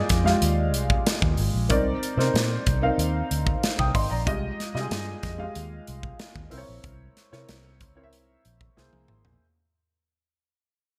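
A dark, mellow baby grand piano with an intimate, boxy tone, audible action noise and an analog chorus opens this slick, nocturnal 1980s jazz-funk pop excerpt in C minor at 93 BPM, joined at 0.1 seconds by a round, foam-muted fingered electric bass and an up-front acoustic drum kit with a punchy kick, medium-tuned snare and gated reverb, moving from Fm9 to C7b9 and C7b13 under a bright digital sheen as the whole fades out and a drum fill arrives at 8.8 seconds.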